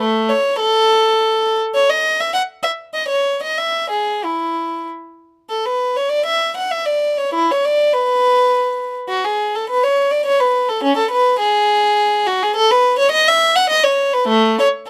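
In a flexible triple metre, moving between 90 and 106 BPM with a gently rubato pulse, this short passage from a longer classical work unfolds as a baroque-style suite movement for unaccompanied violin. The mood is serene yet dance-like. A single bowed violin plays the whole time, from 0.0 to 14.7 seconds, ranging from A3 up to F#5 with a rich, reedy gut-string tone in period style, tuned to A4 = 442 Hz. The opening phrase runs to about 5.5 seconds, and the same material then returns through to the close. Close, detailed microphones and very little reverb place the instrument up front, so every nuance of the bow on the strings comes through with intimacy.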